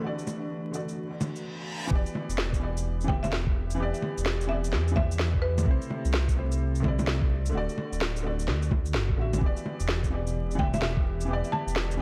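Vinyl crackle hangs over this wistful, melancholic future garage excerpt, where a soft, felt-muted upright piano with tape echo and a nostalgic, warbling pad in the background both pump, joined at the start by a faint, reversed, swelling texture, with swung electronic shaker, bongos and a woody snare entering at 0.2 seconds and ringing in a large room. A reverse cymbal at 1.3 seconds leads into the fuller passage at 1.9 seconds, where a dark, detuned saw bass rumbles up front with its own pumping beneath a muffled, thumpy kick. A buzzing marimba struck with hard mallets carries a dry, gritty melody from 3.1 seconds and returns near the end over chords moving between Em7, C6 and D.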